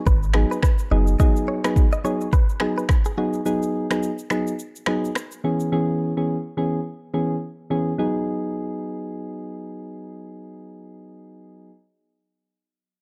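Afrobeats with a sunny, romantic mood, this dark-toned passage opens with a twangy, clean electric guitar riff recorded direct with spring reverb and digital delay until 3.3 s, a brief punchy sine sub bass with a pitch-drop attack, and an electronic afro-pop kit of deep kick, finger snaps, rim click and shaker that stops at 5.7 s, while soft, round electric-piano-like synth keys with chorus carry the G#m7, B6 and C#m7 chords through to 11.7 s.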